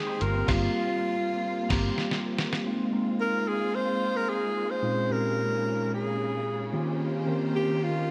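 A straight 4/4 groove at 110 BPM sets this glossy, breezy slice of polished 1980s jazz-funk pop in Ab major, cut from a longer piece. A lo-fi, sampler-style drum kit sits up front with a thumpy kick, fat snare, hi-hat and crash, sounding compressed, pitched down and muffled, while a dark, foam-muted fingered electric bass holds a round G1 beneath it. Both enter at 0.2 seconds and join a band accent; the bass drops out at 1.9 seconds, while the drums push through a fill and stop at 2.6 seconds. A clean, twangy electric guitar picks a short riff through lush chorus in the background, and a mellow tine electric piano with analog chorus carries the accompaniment throughout. Over this, a breathy, whispered alto saxophone sings an intimate melody with light vibrato and a soft attack, as a bowed symphonic string section adds expressive, softly sustained chords. The harmony moves from C7sus4/G to Ab69, Bbm11 and Eb13, all bathed in a long hall reverb and bright digital 1980s-style sheen.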